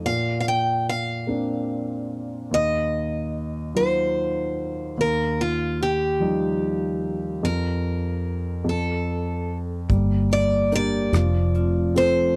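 Acoustic folk-pop ballad in a gentle 6/8, intimate and hopeful, opening with a bright, picked archtop guitar carrying the melody over a grand piano whose long sustain and audible action noise sit close in a dry 1970s-style studio sound with light reverb. At 9.9 seconds the harmony shifts toward a minor chord as a ringing vibraphone played with medium hard mallets adds arpeggios, a dark, round, foam-muted electric bass enters, and a soft brush kit brings in punchy kick, hi-hat and rim click. The clip is cut from a longer piece and ends after about 12 seconds.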